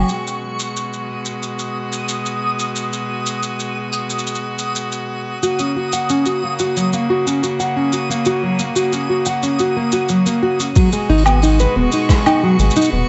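Autumnal and intimate, this folktronica excerpt moves at 90 BPM in G# minor, with a bright string quartet holding bowed chamber chords over a distant, roomy brush kit of hi-hat, rim click, shaker and woodblock, while a reversed, dreamy granular texture hangs high above in its own reverb. A dark, full-bodied fingerpicked nylon-string guitar enters up front with delayed arpeggios at 5.4 seconds as the harmony shifts from G#m7 to F#. At 10.8 seconds a soft, tape-warm electronic kick arrives and the chords return to G#m7, joined at 11.1 seconds by a round, deep analog bass, all set in a small room with light reverb and a rolled-off top end.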